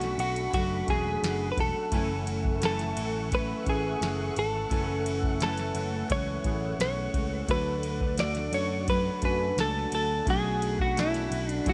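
An 11.7-second excerpt of wistful, lonely indie bedroom pop in F# minor at 86 BPM opens with a bright, compressed clean electric guitar melody up front, coated in analog chorus and tape echo, over a soft vintage rhythm box with a deep kick, tonal snare, ride cymbal and overdrive, a round, dark picked electric bass, a full-bodied picked acoustic guitar with lush chorus and vibrato, warbling cassette-tinged synth keys, and mellow organ-like ensemble strings holding sustained chords through Bm7, F#m7 and D, all set in a digital ambience.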